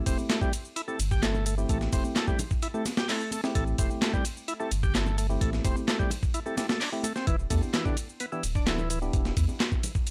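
A compressed, sampler-style breakbeat kit sits up front, its thumpy kick, medium-tuned snare and hi-hat carrying a gritty, small-room character through this swaggering, raw breakbeat cut at 129 BPM in A minor. Alongside it, a deep, thick sub bass with transformer saturation holds the low end, also up front. A layered electronic house kit adds handclaps, ride cymbal and shaker, while soft-handed congas sit in the background. A full, shouting tonewheel organ plays the riff, lightly overdriven through a slow rotary speaker and an analog delay, and a clean tine electric piano adds stabs through a combo amp with its own analog delay. The harmony rests on Am7 before moving to Em7 at 7.3 seconds, in a dry, hardware-recorded sound with little reverb, cut from a longer piece.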